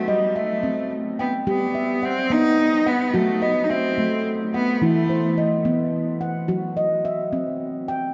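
A gentle 6/8 lilt with a straight feel carries this meditative world excerpt, where a handpan played with soft fingertips rings out mellow, nitrided-steel arpeggios up front while the chords drift between B, C and A minor. A single bowed cello sings a bright, biting melody with light vibrato, intense yet set at a distance, until it falls away at 5.4 seconds and leaves the handpan to carry on to the cut at 8.1 seconds. The whole recording sits in a long, wet cathedral reverb.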